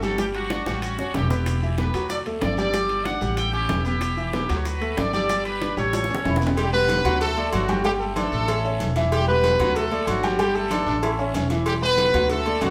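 Salsa at a brisk 188 BPM in 4/4 with a straight feel, this joyful, sunny excerpt is cut from a longer piece and sounds like a band playing live together in one large studio with a wet reverb. A bright, punchy trumpet section carries the opening melody with vibrato and a vintage, tight sound up front. At 6.6 seconds a present horn section with light vibrato takes over the melody, while a mellow, roomy trombone section adds brief distant second lines in the background. A clear, polished baby grand piano and a woody, thumpy upright bass played pizzicato on gut strings drive the accompaniment over a cycling Gsus2, A7 (later plain A), Em7 and D progression. Behind them a percussion bed of ringing congas, round low-tuned bongos and cowbell struck with hard hands, metal-shelled timbales with agogo bells, a raspy guiro and grainy maracas keeps the groove moving, with drum fills near the start and again before the horns arrive.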